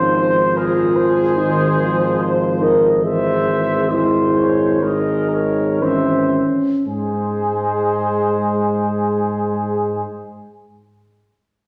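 A tender, hymn-like classical passage for brass band opens at once with the full ensemble in Ab major, moving at a slow, rubato pace of 56-76 BPM in 4/4 and slowing down through the first 6.9 seconds. A mellow trumpet section carries the melody with light vibrato, set distant and roomy, while a flugelhorn sits up front with a warm second line. Beneath them, a dark euphonium and a soft-attacked trombone fill out the accompaniment, and a tuba with a smooth top anchors the bass. The harmony moves from Ab to Dbm over an Ab bass at 3.0 seconds before settling back on Ab as a new section begins at 6.9 seconds. A wet recital hall reverb surrounds the band, giving this short cut from a longer piece a warm, devotional glow.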